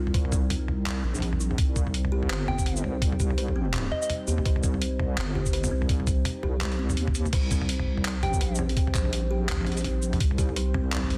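Spacious and heavy, this half-time drum and bass excerpt in C minor at 167 BPM rides a swung groove of gritty, pitched-down sampler-style drums with crash, handclaps, hi-hat, shaker, toms and a soft-clipped snare over a thumpy electronic kick, while a deep, detuned wobble bass sits up front beneath a moody analog pad pumping with sidechain, chorus and phaser, a woody kalimba plucks delayed arpeggios, and a pure FM synth bell drifts through dub echo at 2.5 and 8.2 seconds, all in light digital ambience and a dense, heavily limited master.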